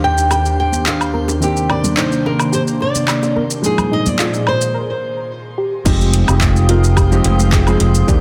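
Warm and relaxed, this sunset chillout excerpt moves at 108 BPM in F dorian, with a bright, fingerpicked flamenco guitar leading up front over a dark, intimate grand piano with audible action noise, a breathy, airy pad, a faint glassy texture of drifting overtones and a soft, round pluck playing arpeggios in the background, all bathed in shimmer reverb. A layered, overdriven deep house kit with metallic hats, handclaps, shaker and woodblock enters at 0.2 s, followed at 0.3 s by ringing bongos and congas, and the guitar stops at 4.8 s as a break begins. At 5.9 s a deep, overdriven electronic kick and a bright, direct fingered electric bass arrive on an Fm9 chord, filling out a dense, heavily limited modern mix.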